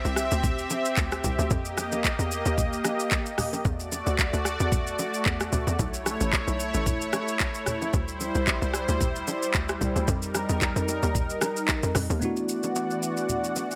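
Lightly reverberant, this soulful, late-night amapiano excerpt in E minor at 112 BPM with a gentle 16th-note swing lays a lush, thick, detuned sawtooth pad with chorus and sidechain pumping over a tight, punchy FM log drum bass, a soft electronic R&B kit of kick, handclaps, rim click, hi-hat and shaker, and close acoustic congas and bongos in the background, its sustained chords moving through D9sus4, F9sus4, E9sus4 and B9sus4 until the bass drops away at 12.2 seconds and a bright, bell-like tine electric piano steps forward.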